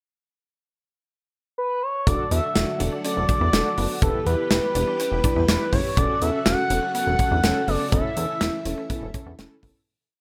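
Driving and nocturnal, this short synth-pop piece at 123 BPM opens with a pickup bar in which an expressive, nasal synth lead enters up front at 1.6 seconds with a smooth, motif-based melody colored by vibrato and chorus. At 2.1 seconds the full chorus arrives: a punchy acoustic studio drum kit with a straight drum-machine beat, a glossy, sequenced chorused synth bass, round, brassy synth brass playing close-voiced eighth-note chords and a shimmering vintage string-machine pad in the background, joined at 2.6 seconds by a very quiet, squelchy blip pluck ostinato, all moving through D/E, Em and F#m/E. Plate reverb gives the lead, brass and strings a polished sheen before the piece fades out from 7.9 seconds.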